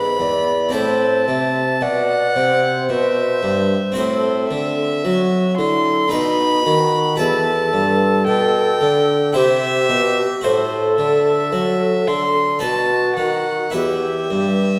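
Classical, baroque-style sonata movement with continuo, cut from a longer piece, a serene, dance-like 3/4 at 55 BPM settling into E minor from 4.0 s and tuned to A4 = 437 Hz. An up-front, reedy gut-string violin with light vibrato carries the melody in period style, while a pure, wooden baroque flute with vibrato tongues a second line beneath it. A close-miked, dry Flemish-style harpsichord with two sets of strings fills in the accompaniment, and a dark, distant solo bassoon supplies the bass, all bathed in a wet scoring-stage reverb.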